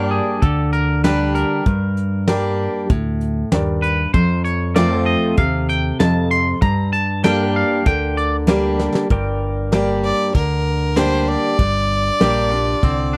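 Lonesome and dusty, this 13-second excerpt of honky-tonk and classic country in G minor moves at 97 BPM, where a twangy, tape-echoed electric guitar solos until 9.1 seconds over an up-front dreadnought acoustic, a round fingered bass, soft brushed drums with a fat snare, a mellow baby grand in the background and a compressed pedal steel holding sustained chords with volume swells and subtle chorus, before a clear, boxy fiddle takes the melody at 10.0 seconds in a dry, close 1970s-style studio sound.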